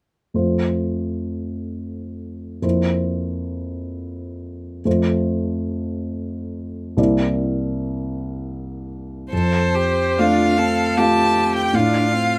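A dark, mellow baby grand piano opens this tender, serene fragment of a slow romantic movement for piano quartet, carrying the accompaniment alone from 0.3 seconds in an unhurried, freely flexible triple metre. The piano sits up front with an intimate, natural sound, and the noise of its action is audible beneath the harmony as it moves gently between home and dominant-flavoured chords. At 9.3 seconds two violins enter together: one takes the melody in a high register with a clear, focused, vibrato-rich bowed tone, while the other adds a smooth, even second line below it. A single bowed cello joins at 10.2 seconds with its own vibrato line, tucked into the background. Close, detailed microphones and a light reverb keep the small ensemble intimate, and the passage is cut from a longer piece.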